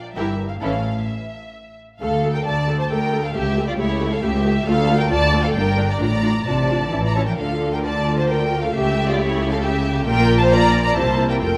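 A distant, lush violin section carries the melody in this restless, dramatic excerpt from a quick classical-period movement for string orchestra, set in D minor at 133 BPM in a straight 3/4. Beneath it, a second violin section adds an expressive line in a lower register, while the violas supply a smooth, even accompaniment with steady vibrato. The bowed cellos and a close, rich double bass section share the bass, giving the ensemble a firm foundation. After a brief opening that moves from Edim/G to A, the music shifts at 2.0 s into a longer passage that circles through D5, A7/C#, Dm and Gm before closing on Bb6 and C7. A moderate scoring stage reverb with a 1.8-second decay surrounds the strings with a generous sense of space.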